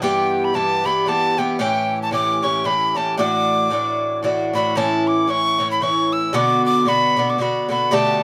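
An airy metal tin whistle carries the melody up front, its straight tone and crisp chiff giving each note a bright, expressive edge in this lively, cheerful stretch of Celtic folk cut from a longer piece. Beside it, a picked acoustic Irish bouzouki with double strings supplies a metallic, close accompaniment as the harmony moves from Em through A7 and Dadd9, then shifts to A at 4.8 seconds and on to Bm. The music sways in three with a light swing, and light reverb frames the closely captured, detailed sound.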